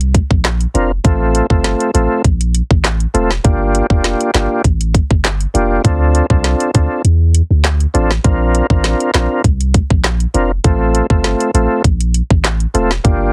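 Dry and heavily compressed with a punchy radio sheen, this summery, sunny dancehall excerpt moves at 100 BPM in a straight 4/4 in F major. A punchy sub bass anchors the low end from the very start, its sine-like tone deep and sustained with a fast, pitch-drop attack that sits up front. The island pop drum kit brings a tight kick, woody snare, metallic hats and handclaps, all coated in vintage 12-bit sampler grit, and the kick drops out between 7.0 and 8.2 seconds before returning. A smooth, clean tonewheel organ enters at 0.7 seconds, its chorus vibrato shimmering while sidechain pumping makes it breathe against the beat. The harmony cycles through Bbadd9, F, Gm7 and Dm7, giving this slice of a longer piece a bright, easygoing lilt.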